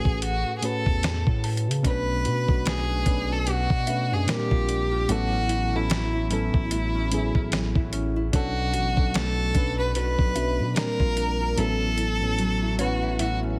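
Heavily compressed with a radio-like squeeze and a light reverb, this contemporary R&B excerpt feels longing and sensual, its sixteenths carrying a gentle swing. A rich, expressive violin carries the melody up front, a single bowed player with vibrato and portamento who still sounds distant, trailed by tape echo. Beneath it, a vintage FM electric piano warbles over a faint noise layer, while a long, deep 808-style sine bass underpins the harmony as it drifts between A6, Bm7 and A#6. A gritty, sampler-style drum kit sits up front with a thumpy kick and a fat snare, closing with a fill from 11.6 seconds. A fingerpicked nylon-string guitar enters at 1.8 seconds with full-bodied classical arpeggios in the background, and a woody, round mallet-like synth pluck adds a soft, percussive shimmer high above, coloured by chorus, phaser and tape echo.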